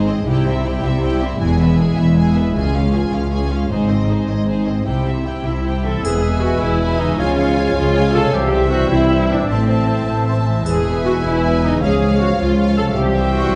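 Expressive, up-front bowed double basses anchor this triumphant, soaring heroic film-score cue in a straight 6/8 at 104 BPM, joined by woody, dark cellos, rich violas, and lush violin sections carrying a focused, vibrato-laden melody with a second line in the background. Tight French horns hold sustained chords while a ringing, fingerpicked concert harp plays very quiet arpeggios, all building toward 6.0 s, when a clear solo clarinet, a distant oboe, a pure, mellow flute ensemble and very quiet trombones enter. A close, dry triangle adds bright touches at 6.0 and 10.7 s, and the whole passage sits in a wet recital-hall reverb.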